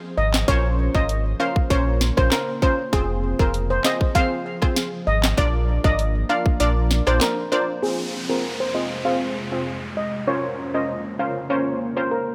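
An airy, ethereal pad opens this sultry, hypnotic dancehall excerpt in F minor at 98 BPM, its sustained chords pumping to the sidechain beneath a haze of ensemble chorus and reverb. A shimmering steel pan carries the melody through a low-pass filter and digital delay, over a detuned analog pluck, a deep sine sub bass and a tight, up-front electronic kit of kick, sharp snare, dark hats, rim click and handclaps, with the kick muted from 6.6 seconds. By 7.8 seconds the bass and drums have stopped, leaving pad, pan and pluck under a filter sweep and an electronic downlifter as the chords move from Fm to Bbmadd9.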